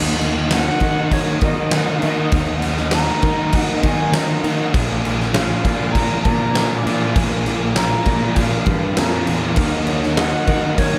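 Shoegaze and dream pop rock with a blissful, wistful air, where a distant, pure silver concert flute with slapback echo floats over dark fuzz, overdriven and raw garage guitar riffs, a fuzzy overdriven picked bass, a very quiet swirling phased analog pad and a huge arena drum kit with a fat snare and punchy kick up front, before a bright, clean direct-recorded guitar slips in with arpeggios at 9.6 seconds in this short cut from a longer piece.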